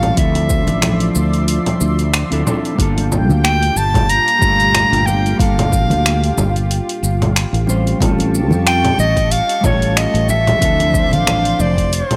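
A gently swung groove at 92 BPM in 4/4, with a light 55% swing on the sixteenths, sets an easy sunset chillout mood in G dorian. This warm, smooth 12.2-second cut from a longer piece moves through Dm9, Gm9 and A7alt before returning to Dm9. A deep house drum kit of finger snaps, hi-hat, shaker and congas carries an overdriven, layered edge from being re-recorded in a small room, and a deep electronic kick joins at 0.2 s. Separate congas, damped and soft-handed with a thick skin, enter at 0.4 s, sitting very quiet in the mix. Up front, a fretless electric bass sounds direct and warm under a lush chorus, while a dark, clean, fingered electric guitar with digital delay stays in the background. A thick, warbling unison pad of detuned sawtooth and square waves swells in slowly and sustains bright, full-bodied chords beneath a close-miked, breathy soprano saxophone that carries the warm, vibrato-laden jazz melody through digital delay, all softened by a light reverb.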